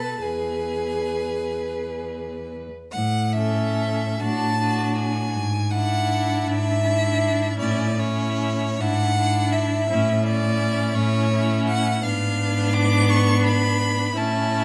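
A 6/8 pulse, taken slowly at 40-58 BPM in dotted quarters, stretches and relaxes with rubato in this tender, romantic movement for string quartet in A major, cut from a longer piece. Up front, a single clear first violin sings the melody with smooth, even vibrato, while a close, focused cello anchors the bass, also bowed with vibrato. Farther back, the second violin carries a rich supporting line, and the viola fills in the accompaniment with soft attacks, expressive portamento and vibrato. After a brief opening, a new section begins at 2.9 seconds, with the harmony moving among A, D/A and E7/G# before reaching a G#dim7 chord at 12.0 seconds. A moderate stone room reverb, with a decay of 1.2 seconds, surrounds the quartet.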